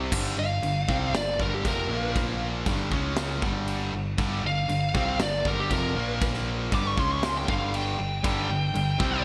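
This powerful, anthemic hard rock excerpt opens on crunchy overdriven guitar sitting in the background beside a bright distorted riff guitar, all over a growly, direct electric bass, with a big rock drum kit of punchy kick, snare and crash cymbal arriving at 0.1 s, wrapped in gated reverb. From 0.4 s a dark, high-gain lead guitar steps up front with a distorted solo trailed by delay, while a double-tracked overdriven rhythm guitar rejoins in the background at 8.2 s. Plate reverb and 1980s-style digital production give the track a polished studio sheen.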